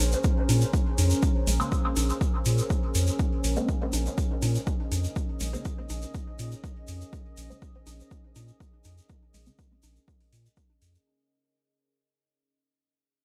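Deep and hazy, this dub techno excerpt moves at 122 BPM in Bb minor, resting on a single Bbm9 chord, where a round, soft sub bass and a punchy, overdriven kick sit up front beneath metallic hi-hats, very quiet tape-warm congas and a grainy egg shaker, while a dark, detuned ambient pad with chorus and built-in reverb holds sustained chords and a muted, nasal chord stab enters at 1.6 s with phaser, dub echo and a filter sweep, the pad, bass and stab pumping to the sidechain in an echo-heavy mix that fades out throughout.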